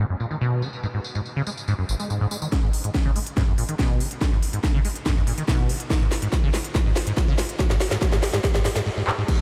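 A straight, driving pulse powers this relentless, intense peak-time techno fragment, where a squelchy, resonant sawtooth acid bass riff with chorus, analog delay and sidechain pumping opens under a filter sweep, an overdriven techno kit of cracking snare, smooth hats, handclaps, tambourine and crash joins at 0.2 seconds, and a heavy, up-front electronic kick lands at 2.5 seconds to launch a build-up full of drum fills and a further filter sweep on the bass, all set in a dreamy, reverb-soaked, low-passed mix.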